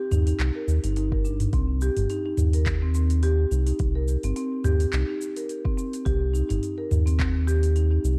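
A round, deep analog bass sits up front with sidechain pumping beneath mid-forward marimba arpeggios played with medium mallets through delay, while an overdriven afro-pop kit of handclaps, metallic hats, shaker and toms is joined at 1.1 seconds by a deep, overdriven electronic kick, all in an earthy, warm organic downtempo groove at 106 BPM in C minor with a light 16th-note swing, moving from Eb to C minor in this short excerpt with digital ambience and a dark, warm production.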